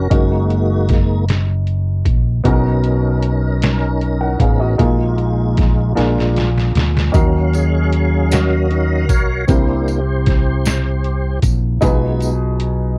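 In a slow, straight 6/8, this fervent, solemn gospel excerpt puts a gritty, pitched-down sampler-style drum kit with a thumpy kick and a round, punchy, dark electric bass up front beneath an intimate baby grand piano with audible action noise, while a full, lightly overdriven tonewheel organ with slow rotary speaker and chorus vibrato plays the lead; a drum fill arrives at 6.0 seconds, and a jingly acoustic tambourine enters at 7.1 seconds, all in a dry, close 1970s-style studio sound.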